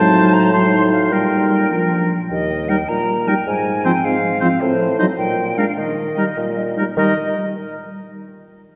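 A pure, vibrato-laden silver flute carries the melody up front in this lively, cheerful classical-period wind quintet movement in Eb major at 102 BPM in 6/8, cut from a longer piece, with a smooth-topped oboe on the second line, a warm clarinet and a dark, close-miked French horn filling the accompaniment, and a mellow bassoon holding the bass, all set in a wet church reverb.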